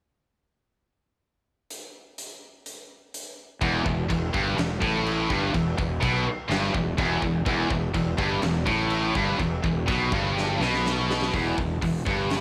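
A straight 4/4 pulse from a big acoustic rock kit, with fat snare, punchy kick, hi-hat and china cymbal in a bright stone room and a cassette-tape grit, opens this dark, relentless heavy metal excerpt alone at 1.7 seconds before three picked, distorted electric guitars arrive together on a low riff at 3.6 seconds: a tight one up front, a high-gain one in the background, and a scooped, double-tracked one behind them that stops at 11.3 seconds, joined by a growly, fuzz-overdriven fingered bass up front, with a late drum fill and light reverb on a home cassette recording.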